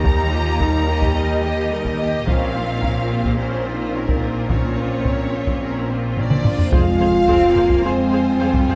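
A wet scoring-stage reverb, with a decay of about 1.4 seconds and a top end that stops short of the brightest highs, surrounds this short dramatic, heroic excerpt of epic orchestral film score in F minor, moving at 108 BPM in a straight 4/4. Two lush, bowed violin sections carry the melody and a second line with vibrato, while a clear viola section supplies accompaniment and focused cello and smooth, even double bass sections hold down the bass in the background. A mellow, distant French horn section sustains chords over the harmony as it moves from Eb to Bbmadd9. A close, dry taiko ensemble struck with hard sticks drives the music throughout and plays a fill just before a huge, bright reverse cymbal and sub drop emerge from the background at 6.4 seconds. At 6.7 seconds the harmony lands on F minor with an impact: a further symphonic string section joins on sustained chords, and timpani with calf heads and medium mallets sound on F2 before falling away by 7.5 seconds.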